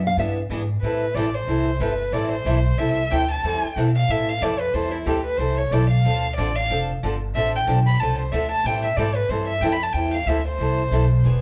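A swung eighth-note pulse in four carries this virtuosic, swinging jazz manouche passage, opening on woody, thumpy pizzicato upright bass on gut strings, with a bright, boxy picked archtop guitar joining at 0.2 seconds, its fresh strings giving off finger squeaks. From 0.8 seconds a single violin takes the solo, bowed sul tasto with light vibrato, a soft attack and an airy, intimate tone, over harmony moving from E7#9 to Am9, then to Dm7 and back to Am9. All three players sit up front within a wet club reverb that places the listener further back in the room.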